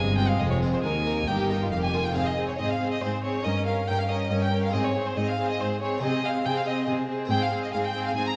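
A driving, dramatic passage from a baroque-style concerto movement opens with the full ensemble at once: a solo violin up front carries the melody with a focused, vibrato-laden tone and a smooth top, while a lush symphonic violin section also plays the melody in the background. Beneath them, an intimate chamber violin section plays a second line with a soft attack and light vibrato, and a chamber viola section fills in the harmony with a rich, focused sound. A chamber cello section anchors the bass, joined briefly by a dark, expressive double bass section with portamento that drops out at 2.1 seconds. A close-miked, dry, round-toned harpsichord in the Italian style plucks its accompaniment in the background. The harmony moves from F minor through E-flat to A-flat, settling on a lush Abmaj13 chord at 7.3 seconds. The ensemble sits in a wet concert hall with a faint mains hum beneath it.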